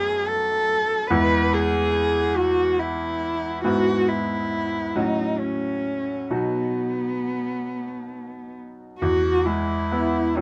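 A light reverb surrounds this brief cut from a longer romantic classical piece for cello and concert grand piano, with both instruments heard close and up front. The mood is lyrical and serene, moving slowly in 6/8 at about 44 to 49 beats per minute on the dotted quarter, with a free, rubato feel in E major. A single bowed cello carries the melody in a dark, expressive voice, shaped with vibrato, soft attacks and gliding portamento between notes. The piano accompanies throughout, its tone bright and brilliant above a deep, present bass. The harmony settles from B7 onto E, passes through F#m and B, and returns to E as a new section begins at 9.0 seconds, just before the clip ends at 10.4 seconds.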